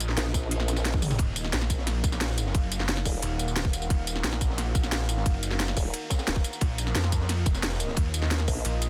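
A snarling, distorted saw bass and a deep, warbling ambient pad with chorus and sidechain pumping open this tense, mechanical dark technical drum and bass drop alongside a cracking, crisp electronic drum kit and a very quiet, gritty breakbeat kit, while a wobbling formant-sweep bass plays from 0.2 to 3.2 seconds, a tight electronic kick enters at 0.3 seconds, and a drum fill lands at 0.9 seconds, all over a dense, heavily limited, dry mix.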